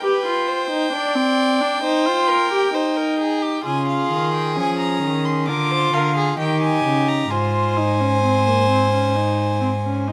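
A baroque-style classical fugue for string quartet, cut from a longer piece, moves at 66 BPM in 4/4 with a driving yet contemplative mood, starting in C minor and turning to A-flat major at 3.7 s. The first violin carries the high melody with a reedy gut-string tone, the second violin plays a close, rich second line beneath it, and the viola's nasal accompaniment with light vibrato sits up front. The period-style cello enters on the bass at 3.7 s, all captured by close, detailed microphones in light reverb.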